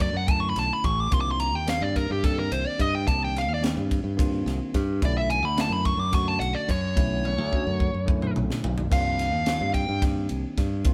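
A brisk 216 BPM count in 7/8, felt in straight eighths, drives this nocturnal, slick slice of electric jazz fusion, cut from a longer piece. A dark, smooth overdriven lead guitar takes the solo up front, picked and ranging from G4 to D6, before falling silent at 10.0 seconds. Beneath it, a bell-like tine electric piano adds clean, chiming accompaniment, and a modern fingered electric bass sits direct and bright in the low register. The crisp, airy, polished drum kit pairs a punchy kick and high-tuned snare with dark cymbals, rolling through a fill from 7.2 to 8.9 seconds. The harmony moves between Bm11 and Cm11, and the band plays live together in a stone room with moderate reverb.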